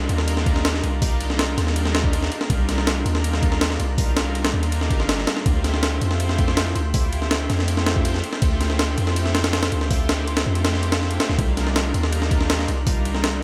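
Lightly reverberant and nostalgic, this atmospheric drum and bass and jungle passage at 162 BPM in C dorian sets a lush, detuned sawtooth pad with chorus, sustaining Cm11 and Dm11 chords, over a deep, mellow sine 808-style bass and an up-front, gritty, pitched-up breakbeat kit whose thumpy kick, high-tuned snare, hi-hat and ride carry the sampled grain of a large room.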